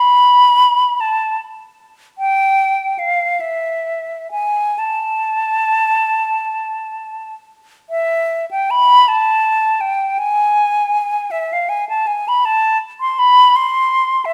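Set up close in a moderately reverberant recital hall, this yearning, mournful classical passage for unaccompanied flute drifts freely in 6/8 and A minor at a rubato pace of roughly 27 to 60 beats per minute, the silver concert flute sounding airy and bright with soft attacks and expressive vibrato as it sings between E5 and C6 through one phrase and then its return at 7.9 seconds.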